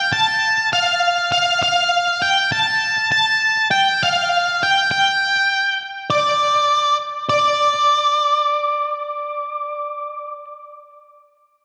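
Rock in D minor at 100 BPM, this melancholic, cinematic fragment features a lone octave-fuzz electric lead guitar carrying the melody up front from 0.0 to 10.4 seconds, its dark, picked tone thick with distortion and colored by slapback and tape echo, set in a wet concert-hall reverb that gives it a big arena sound, with a shift in section at 7.3 seconds.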